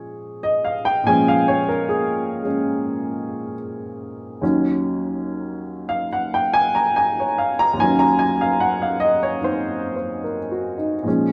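This swinging, late-night solo jazz piece lasts just over 11 seconds and is cut from a longer performance. A lone upright piano carries it from start to finish, its swung eighths pulled loose by rubato. Its tone is warm, woody and intimate, slightly detuned, with audible action noise that lends a natural character. The harmony moves from Bbm7 to Ebm7 at 4.4 seconds, and the playing spans the keyboard from Eb2 up to Bb5. The piano sits up front, while moderate small-room reverb and a listening position further back in the room give the sound a cozy, lived-in space.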